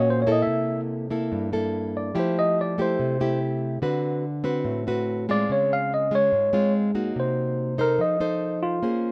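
Romantic and sophisticated, this brief bossa nova fragment at 144 BPM in a straight 4/4 features a clean tine electric piano played through a combo amp, which carries the melody between F4 and F5 as the featured voice, while a fingerpicked classical nylon-string guitar supplies warm accompaniment; both sit up front in light reverb over chords moving from C6 through Fmaj9, D6 and Dbmaj7 to Cm7b5 and F7.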